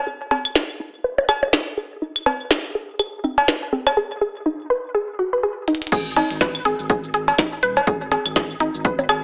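Heard through a thin AM-radio tone with light reverb and digital ambience, this hypnotic, quirky minimal techno fragment at 123 BPM in G# minor, swung on the sixteenths, opens with a juicy, squelchy resonant blip pluck riff carrying chorus, sidechain pumping and dub echo under a filter sweep, joined by tape-warm electronic cowbell, congas, claves and bongos with digital delay and an up-front minimal click drum kit of tiny snare, clicky hi-hat, cabasa and crash cymbal, until a drum fill at 5.7 seconds leads into a drop at 5.9 seconds, where a punchy layered electronic kick and a deep, saturated sine sub bass with its own sidechain pumping arrive over a G#5 chord.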